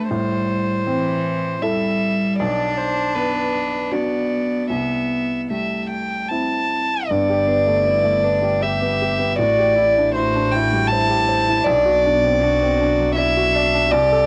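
A warm, floating solo violin carries the melody up front in this intimate, tender neoclassical passage at 78 BPM in a rubato 3/4, with a rich bowed cello tracing a soft second line and a clear, polished baby grand piano accompanying through Am7, Bm and C6 chords, all three colored by cassette tape, before a close, airy double bass enters at 7.1 seconds beneath the shift to G, all in a moderate booth ambience captured on a home cassette recording.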